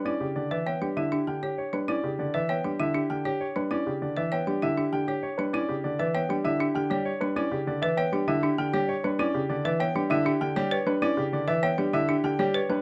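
Minimalist classical pattern music in a straight 6/4, this brief extract from a longer piece feels both meditative and urgent as it rests on a single Em7 harmony for its full 12.8 seconds. A concert grand piano carries the melody with a clear, up-front tone and natural depth, while a worn baby grand piano with long sustain supplies the accompaniment below. A folk marimba struck with hard mallets adds woody, rustic, percussive arpeggios, all captured by close, detailed microphones in a dry, nearly reverb-free space.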